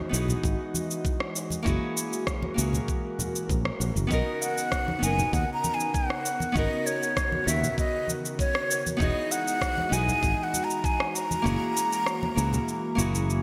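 Blissful and smooth, this sunset chillout piece, cut from a longer work, moves at an easy 98 BPM in a straight 4/4, drifting through lush chords such as Emaj9, F#9, Bmaj9 and a rootless G#m11. A fingerpicked nylon-string guitar with fresh strings plays a small, delayed accompaniment, while an airy, breathy pad with a detuned, chorused sawtooth-and-noise character and slow attack holds full-bodied sustained chords. Underneath, a growly, punchy fingered electric bass sits up front, joined by a knocking electronic kick and tape-flavoured electronic cabasa and rim click dressed in gated reverb. Congas sit softly in the background with a small-room acoustic feel. At 4.1 seconds a mellow silver concert flute enters close-miked and up front, its tongued, straight-toned line slightly unsteady and trailed by digital delay, and the kick falls away before the close. The bright 1980s-style digital production wraps the mix in a moderate, lush hall reverb.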